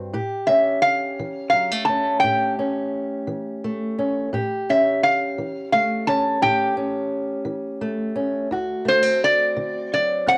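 Acoustic country blues in 12/8 with a gritty, rollicking mood, this short cut from a longer piece sets a dark, woody, boxy fingerpicked ladder-braced guitar with old strings and a cassette-tape grain under a metallic, nasal resonator slide guitar played with fingerpicks that carries the up-front melody from 0.5 seconds, all in a moderate studio reverb with the homespun character of a cassette home recording, moving from A7 to D7 near the end.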